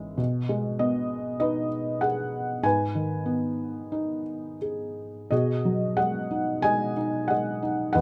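A felt-muted upright piano opens this brief classical solo, its soft, mellow tone sitting up front and close to the listener. The mood is bittersweet and brooding, and the lyrical playing moves with a flexible, rubato feel in four. Close, detailed microphones catch the intimate character of the instrument, including audible action noise from its mechanism, while light reverb adds a little space around the natural sound. The piano spans a range from deep bass notes up into its middle-upper register. Around 5.3 seconds the music shifts into a new section on a fresh chord, and the passage ends at 8.0 seconds as a fragment cut from a longer piece.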